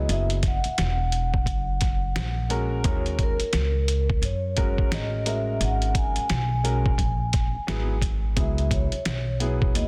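Jazz-hop with a nocturnal, cool mood at 87 BPM in a swung 4/4, where a mellow vibraphone played with soft mallets carries the melody through digital delay with fast motor vibrato, an intimate upright piano with audible action noise and long sustain comps chords like F#9sus4, D#m7 and G#m9, a woody pizzicato upright bass sits up front, and a muffled, pitched-down sampler-style drum kit with a thumpy kick enters at 0.1 seconds, all in a small room with a dense, heavily limited modern master.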